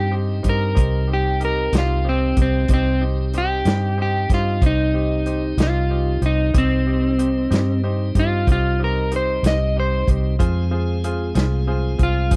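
Over a straight 12/8 pulse from a tight, mid-forward soul drum kit that enters at 0.4 seconds and a round, foam-muted fingered electric bass sitting up front, this mournful, brooding slow blues fragment features a slightly broken-up picked electric guitar soloing in the foreground while a brilliant, woody upright piano accompanies and a piping tonewheel organ sustains chords through a slow rotary speaker in the background, all captured in a dry, close 1970s-style studio sound as the harmony shifts from C minor to F minor at 10.4 seconds.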